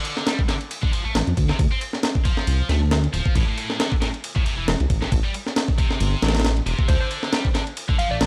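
Breakbeat with a swaggering, gritty swing, this short dry fragment pairs a pitched-up, compressed sampler-style drum kit of thumpy kick, high-tuned snare and ride up front with a scooped, double-tracked high-gain guitar riff soaked in distortion, overdrive and analog delay, joined at 1.1 seconds by a deep, rumbling detuned saw bass with tube saturation, while a hollow, bouncy square-wave pluck with chorus, telephone filtering and delay slips in at 6.9 seconds over chords moving from Dm to Am to D5.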